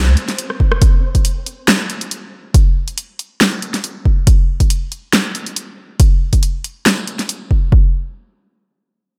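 Bathed in light reverb and digital ambience, this cavernous, dark deep dubstep cut at 139 BPM in a half-time, lightly swung 4/4 opens with a flickering, grainy, detuned texture with lush chorus sitting in the background until 0.8 s, while an up-front deep house kit of hi-hat, rim click and fat snare enters at 0.2 s and a punchy, layered electronic kick joins at 0.6 s, both carried by small room reverb.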